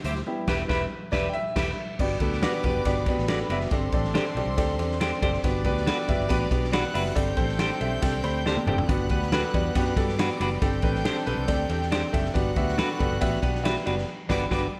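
Uptempo 1960s-style soul with a danceable, warm feel, driven by a raw garage drum kit with a punchy kick and rolled-off top, a round, foam-muted electric bass, and a woody upright piano up front that adds a fill at 8.0 seconds, while twangy clean electric guitar stabs ring with spring reverb and a tight, jazz-style horn section and a floating, sul tasto violin section sit in the background, with band accents at 0.3 and 14.1 seconds in this small-room cut from a longer piece.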